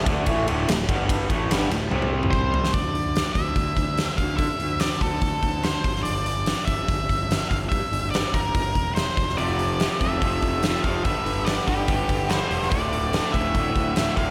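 A huge arena drum kit with a fat snare and punchy kick drives this brooding, gritty classic rock excerpt in a lush hall, as a fuzzy picked electric bass rumbles throughout, a bright, lo-fi, double-tracked garage guitar riff plays at the start and returns at 9.4 seconds, and a dark octave-fuzz lead guitar with slapback echo carries the melody from 2.3 seconds, entering during a drum fill.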